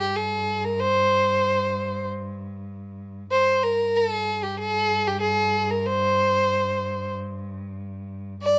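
In free time, this brief excerpt of Arabic music unfolds in G maqam bayati with a soulful, melancholic mood. A warm, smooth bowed violin sits up front carrying the melody between G4 and D5 with vibrato, while a rich, focused bowed cello holds a low G2 drone beneath it, also with vibrato. Both parts play throughout the 8.6 seconds in a moderate studio reverb.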